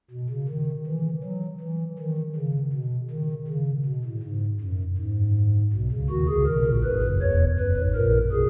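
A pipe organ's stopped flute register sounds at 0.1 s, its soft, hollow voice opening a brief fragment of a baroque-style three-part fugue played as a solo. The mood is elegant and joyful, moving at a steady 80 BPM in a straight 4/4, with the instrument tuned slightly above standard pitch at A4 = 441 Hz. The flute stops carry a mellow, romantically voiced tone that sits up front, spanning from a deep E1 to C#5 above. The harmony settles onto B at 5.7 s before arriving at C#m7/E at 7.2 s, and the passage breaks off at 8.5 s, cut from a longer piece. A lingering church reverb surrounds the organ, heard from further back in the room, and lossy compression artefacts mark the recording.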